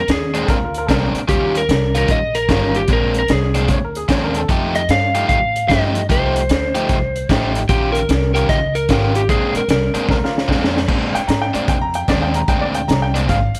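A dark, slightly broken-up lead guitar carries the melody of this swaggering, gritty electric blues shuffle over a warm overdriven guitar riff, thumpy pizzicato upright bass and a saturated breakbeat kit with a punchy kick and high-tuned snare, while a clear upright piano adds brief woody second lines before taking a short solo at 10.9 s, after the lead drops out and a drum fill at 10.1 s.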